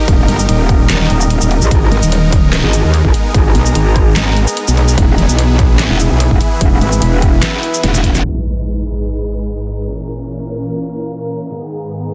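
Heavy wobble dubstep at 147 BPM in G# harmonic minor, this aggressive, weighty cut from a longer piece rides a half-time feel with a light swing on the sixteenths. Two metallic, saturated FM wobble basses sit up front with chorus and overdrive, carrying the low end through the drop alongside a punchy, layered electronic kick until about 8 seconds. Above them, huge, detuned supersaw chords glow bright through a phaser and pump against the sidechain, while a warbling, nostalgic lo-fi pad with slow attack and long release adds mellow, chorused haze higher up. The dubstep kit brings a deep snare, handclaps, hi-hat and shaker, its parts darkened by low-pass filtering and carrying the sound of a large room. A drum fill and band accent close the drop, then an electronic impact lands at 8.2 seconds as a filter sweep runs over the final section, where the chords move through G#m and A#dim. The mix is dense and heavily limited, with little reverb overall.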